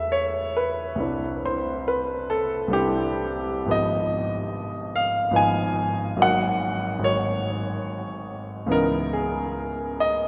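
Impressionist classical solo piano, this short excerpt drifts in a wistful, hazy mood, moving in a rubato 3/4 at roughly 57-76 BPM. A clear grand piano plays alone for the full 10.3 seconds, spanning G#1 to G#5 and sitting present and up front in the sound. The harmony opens on Em9 and Cadd9 before settling into G# minor at 3.7 s, passing through G#m6 and D#m7/G# to arrive on C#m9 at 8.7 s. Rich extended chords give the passage a soft, blurred colour. A cathedral reverb with a long 5.2-second decay bathes the piano in a wet, spacious halo, lending the music its misty, suspended atmosphere.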